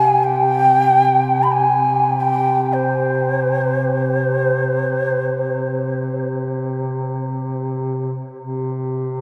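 In free time, this short, longing and solemn Caucasian folk lament sets a breathy, mellow shakuhachi melody with vibrato, tongued attacks and audible chiff against a dark duduk drone on a low C that carries its own vibrato and scooped notes. The shakuhachi sounds distant yet up front and slightly unsteady, touched by a slapback echo, and falls away at 6.4 seconds, leaving the duduk to sound alone until 9.2 seconds. A huge ambient reverb places both in a vast, echoing space, lending the lament a ghostly, cavernous air.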